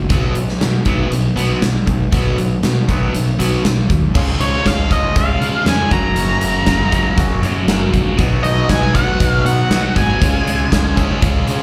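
A huge arena drum kit sits up front with a punchy kick, bright cymbals and a pumping room sound, driving this sunny, confident classic rock excerpt at 119 BPM in a straight 4/4, alongside a growly fuzz fingered bass and two background riffing guitars, one a hollow-body with slapback echo and the other a raw garage guitar with phaser and slapback. At 4.4 seconds a dark octave-fuzz lead guitar takes the melody up front, while a very quiet, woody upright piano adds brilliant accompaniment from 4.2 seconds as the chords move through C#, F#add9 and B. The whole performance is heard as a live gig through the venue's PA, with club reverb.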